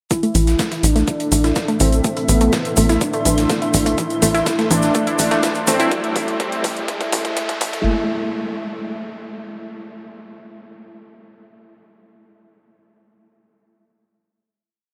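Melodic techno at 124 BPM in A minor, hypnotic and cinematic, this short piece is one long build-up over an A minor chord, with an overdriven four-on-the-floor kick, metallic overdriven hats, a gritty looped breakbeat from a dusty sampler-style kit, a grainy hand-played shaker and a tight, nasal off-beat sequencer bass pumping up front. A fat, detuned sawtooth lead plays a repeating riff with chorus, vibrato and delay, while a lush unison pluck cycles a 6-step loop drifting against the bar through tape echo, and filter sweeps run across the lead, the pluck and a deep, moody analog pad that enters at 1.3 s alongside a cloudy, blurred granular pad. A background riser joins at 3.6 s and a drum fill begins at 4.0 s, and the whole dreamy mix is soaked in a huge ambient reverb.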